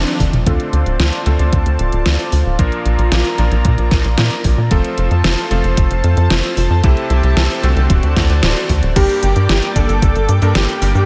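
A punchy sawtooth-and-square sequencer bass sits up front in this uplifting, dreamy synthwave excerpt, driving a straight 4/4 at 113 BPM with fast, decaying filter plucks from D1 to Bb2. An overdriven electronic kick with a knocking tone and a layered pop kit of deep snare, hi-hat, cabasa, toms and crash, the kit dressed in gated reverb and both re-recorded in a small room, enter just after a band accent at the top, with a drum fill at 0.2 seconds. Above them, a shimmering, retro pulse-width pad holds sustained chords in chorus and shimmer reverb, while a bright, clangy vintage electric grand piano cuts through with filtered, delayed stabs. The harmony moves through Dm7, Bb, F, C6 and D7 before settling on Gm at 9.0 seconds, where a smooth, detuned supersaw melody returns with delay and shimmer beside a very quiet, lush FM electric piano with a soft pad layer. The whole piece sits in a light reverb, and the excerpt is cut from a longer track.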